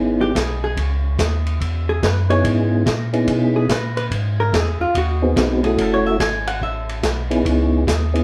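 Swung eighth notes drive this soulful, smoky soul jazz organ trio at 144 BPM in 4/4, set in C# minor and cut from a longer piece. The vintage drum kit comes in at 0.4 seconds with hi-hat, ride, snare and a punchy kick, its dark cymbals and rolled-off top giving it a mellow acoustic presence. The tonewheel organ bass sits up front with a piping, scooped tone, audible key click and slow rotary speaker. Above it, a second organ carries the melody with a soft, flute-like voice, second-harmonic percussion, chorus vibrato, slow rotary and a plate reverb. A dark, clean, compressed hollow-body electric guitar takes a picked solo turn from 0.2 to 7.4 seconds, as the harmony moves from C#m9 through G#7#9 and F#m9 back to C#m9. The trio sounds heard from further back in a studio room, with a moderate reverb around it.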